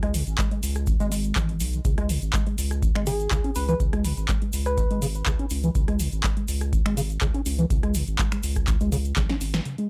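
A rubbery, resonant square-wave acid bass drives this gritty, raw acid house fragment, its filter sweeping through the whole section with tube saturation and ensemble chorus thickening the riff. Beneath it, a thick, saturated sine sub bass holds the low end with sidechain pumping, while a deep, tape-warm electronic kick anchors the straight pulse. An analog drum machine adds a punchy snare, metallic hats, handclaps, finger snaps and rim clicks, and a grainy, bright cabasa sits in the background. From 3.1 to 5.0 seconds a round, gentle FM lead with a keys-like touch and vibrato appears, colored by chorus, phaser and digital delay. The dry sound carries little reverb, and a drum fill at 9.2 seconds leads into a band accent as this cut from a longer piece closes.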